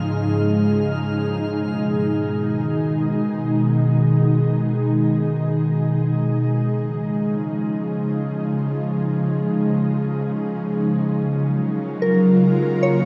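In free time, this melancholic, reflective ambient passage in G# dorian, cut from a longer piece, rests on an ethereal, airy pad of detuned sawtooth and triangle tones that holds sustained chords up front from start to finish, moving from C#add9 over G# through G#m and C#add9 to F#maj7. A glassy sine texture of drifting overtones hovers in the background only until 1.4 seconds, and a soft, pure FM synth bell with chorus, phaser and dub echo arrives at 12.0 seconds for brief arpeggios. The whole mix sits in a wet echo chamber with a cassette-tape character.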